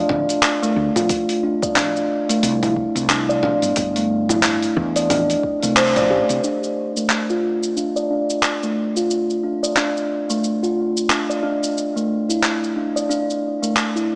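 A steel tongue drum opens the piece at 0.0 s, struck with firm rubber mallets and spinning bright, ringing arpeggios through a low-pass filter and digital delay. This organic downtempo track moves at 90 BPM in 4/4 with a swung sixteenth feel, and its mood is mystical and earthy. Almost at once a dusty soul sampler-style kit joins with gritty, compressed handclaps, hi-hat, shaker and toms sitting up front. Beneath it, a growly, hollow-body fretless electric bass and a deep, tape-warm electronic kick anchor the opening Dm to Cadd9 harmony, both heard only in the first half. After a band accent at 5.8 s, the harmony falls away and a filter sweep takes hold of the airy tongue drum from 6.4 s, before the chords return on a suspended Asus4. A moderate echo chamber reverb and a small-speaker tone color the whole passage, and it is cut from a longer piece.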